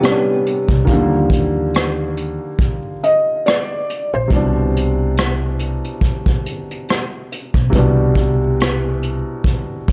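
A gently swung 4/4 groove from a vintage brush drum kit, with a punchy kick, hi-hat and rim click, sets a cosy, mellow lo-fi hip hop mood. A smooth, short-sustained upright piano comps on major-ninth chords, a brief dark, slightly broken-up electric guitar line with tremolo and tape echo sits in the background until 0.6 s, and a growly pizzicato upright bass joins at 0.7 s. From 3.0 s a soft, boxy felt-muted upright piano carries an intimate melody up front, all within a dry, gritty sound full of vinyl crackle and a light touch of reverb.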